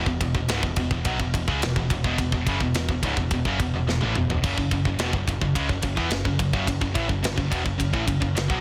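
Two bright, distorted electric guitars open this heavy, epic metal excerpt together with an overdriven picked bass, playing a riff at 107 BPM in a straight 4/4 feel, with the tuning set to A4 = 444 Hz. The tight distorted guitar sits up front, while the high-gain guitar stays in the background, both ranging from C#2 to B3. Underneath, the electric bass has a growly, punchy, amped tone reaching down to C#1. The acoustic drum kit comes in at 0.1 seconds, mid-forward and up front, with a medium-tuned snare, tight kick, rolled-off top and a big-room character, using crash, ride, snare, kick and toms. A drum fill from 3.9 seconds runs into the harmonic change from E5 to F#5 at 4.4 seconds, all within a small room reverb.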